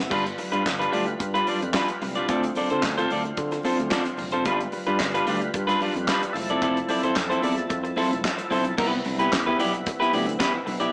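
Disco at 111 BPM in a straight 4/4, driving and sultry, heard as a short cut from a longer piece. A slightly broken-up, picked electric guitar sits up front as the loudest part, compressed and playing accompaniment over chords that move from G7 through Dm7 and Fmaj7 before settling on Cmaj7 at 8.8 seconds. Behind it, a thick, gritty tonewheel organ holds sustained chords in the background, with key click, second harmonic percussion, chorus vibrato and a slow rotary speaker. An overdriven fingered bass, direct and amped, carries the low end, while a damped 70s kit with a fat snare, tight kick and rolled-off top drives the groove with hi-hat, handclaps and crash cymbal. Very quiet congas with hard hands and a thick skin sound distant, as if set deep in a large room. The band plays live together in a stone room with moderate reverb, and the whole mix has a small-speaker character.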